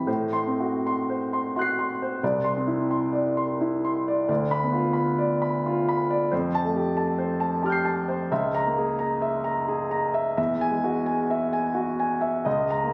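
In a rubato 3/4 that drifts between 76 and 93 BPM, this wistful, hazy 12.9-second excerpt of impressionist classical solo piano moves through A minor, tuned to A4 = 439 Hz, with colored chords such as Am6, Cadd9, Dm6, Fadd9, Dbm6 and Eadd9 that shift about every two seconds. A single concert grand piano, warm and open with a deep bass, spans C2 to C7 and sits up front. It is heard through a moderate recital hall reverb of about 1.5 s, captured on a phone in the room and colored by club reverb and compression.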